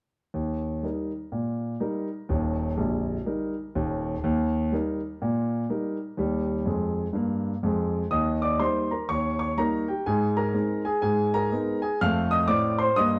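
Stride jazz piano with a swinging, playful mood, this short excerpt is cut from a longer piece and runs at a bright, bouncing clip in four with a swing feel on the eighth notes. A solo grand piano carries everything from 0.3 to 13.2 seconds, its tone warm, open and up front, with long sustain. The player covers a broad span of the keyboard, from deep bass notes up into the high treble. The opening stretch settles on the home chord before a new passage arrives around 8.1 seconds, moving through a dominant seventh, a major and then a minor chord before landing on a seventh chord that leaves the phrase hanging. A moderate echo-chamber reverb surrounds the piano, and the overall production is dark and warm.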